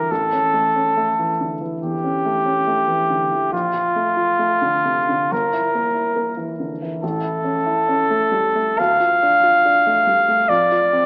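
Heard through worn, warbling old cassette tape with drifting pitch and a small-speaker sound, this elegiac romantic classical excerpt sits in the wet reverb of a large scoring stage. A mellow, vintage-toned trumpet carries the solemn melody up front, while a dark, intimate baby grand piano accompanies more quietly beneath it, its short sustain and audible action noise adding a natural closeness. The duo moves at a rubato 70 BPM in 4/4, passing through A, Bbmaj7, Edim/G and Dm before settling on an open F5 at 10.5 seconds.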